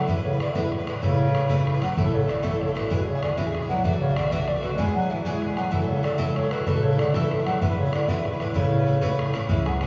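Bathed in a wet cathedral reverb with a 6.5-second tail, this lively, cheerful Celtic jig in A major at 127 BPM in 6/8 sets a pure, hollow baroque flute with vibrato and crisp attack at a distance over a soft-edged classical bass clarinet second line, metallic double-strung picked Irish bouzouki up front, a boomy, open bodhran entering at 0.1 seconds, and a dark, thumpy gut-string upright bass plucked in the background.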